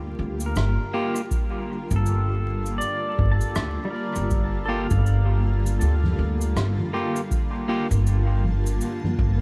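A blurred, granular cloud pad fades in at 0.0 seconds over a woody, pizzicato upright bass that sits up front, setting a meditative, deep ambient dub mood on a single minor-seventh chord with a swung feel. A distant, roomy soft-mallet kit of cabasa, rim click and toms drifts through dub echo, while a bright pedal steel guitar plays slide arpeggios with volume swells, tape echo and 12-bit sampler grit until 6.9 seconds, and a slightly broken-up electric guitar adds low-passed stabs. From 1.3 seconds an analog electronic kick anchors this cut from a longer piece, all set in a small room with light reverb and vinyl crackle.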